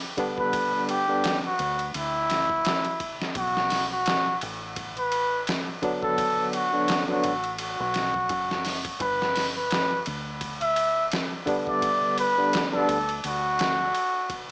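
A slow, brooding trip hop groove at 85 BPM in 4/4 with a light swing on the sixteenths sets a cinematic mood in this short excerpt from a longer piece. A compressed, pitched-down sampler-style drum kit sits up front with a thumpy, muffled kick, a medium-tuned snare, hi-hat and ride cymbal, carrying a tape-warm small-room character. Underneath, a deep dub fingered electric bass plays round and punchy but dark and foam-muted, staying low in the mix while the harmony moves from G to B minor and back to G at 9.0 seconds. A bright, barky tine electric piano with tremolo sounds briefly near the start, then returns at 5.8 seconds as a clean accompaniment. Leading throughout, a solo trumpet with a cup mute sings a soft, veiled, smooth-topped line in a classical style, coloured by vintage 12-bit sampler grit and tape echo. Light reverb and a digital ambience frame it all in a small-speaker sound.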